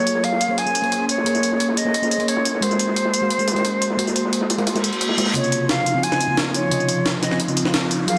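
An airy silver flute carrying a tape-echoed melody opens this lush 176 BPM liquid drum and bass excerpt in Db major, over a soft, round FM electric piano with chorus and delay and a glassy, ethereal FM pad in the background. A gritty, pitched-up sampler breakbeat with a high-tuned snare sits up front, while a dark, saturated acoustic kit lingers behind it until 5.3 seconds. An electronic reverse cymbal and riser enter at 4.8 seconds, leading into a build-up from 5.4 seconds, all set in a hall reverb and a dense, heavily limited master.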